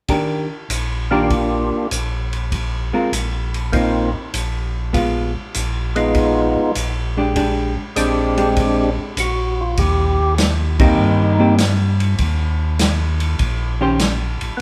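A swinging 4/4 groove at 99 BPM drives this soulful soul jazz organ trio excerpt in Eb major, where a punchy vintage drum kit with dark cymbals and a rolled-off top backs a clean, picked hollow-body jazz guitar comping from 0.1 s, a round, mellow tonewheel organ bass with chorus vibrato, light overdrive and slow rotary speaker entering at 0.7 s, and a fat, percussive tonewheel organ melody with third harmonic percussion and slow rotary speaker arriving at 1.1 s, all sharing a large studio room before a band accent lands early in the second section.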